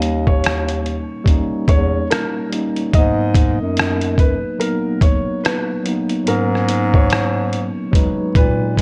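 Lo-fi hip hop with a nostalgic, melancholic mood and a swung 4/4 groove, this short cut from a longer piece moves from D#7 to G#m9 at 2.9 s. A soft, felt-muted upright piano carries an intimate, vintage-toned melody over a mellow, clean tine electric piano tinted by cassette tape, while a breathy bass clarinet plays the bass line up front with jazz-style subtone and vibrato. A muffled, pitched-down, sampler-style trip hop kit of thumpy kick, hi-hat and rim click sits compressed and up front with a large-room character, and the whole mix carries light reverb and a cassette tape haze.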